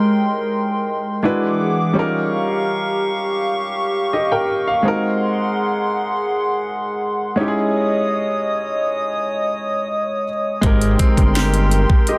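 Romantic and smooth, this contemporary R&B excerpt moves at 83 BPM in a straight 4/4, set in Ab major. A clear, intimate grand piano with audible action noise carries the accompaniment from the opening, alongside a hollow, flute-like soft pad that holds sustained chords with a slow attack, chorus and sidechain pumping. The harmony drifts through rich extended chords, starting on Abmaj9 and passing through E9, Eb9/G, Ab7 and Dbmadd9 before returning to Abmaj9 at 10.6 seconds. At that point a trap drum kit arrives up front with a knocking kick, sharp snare and metallic hats, joined by a fat, detuned sawtooth bass with a saturated filter pluck and a direct-recorded clean electric guitar playing twangy, picked arpeggios through digital delay. The bass stops at 11.9 seconds, while the other parts carry on to the end. Light reverb surrounds the mix, and the master is dense and heavily limited in a modern style.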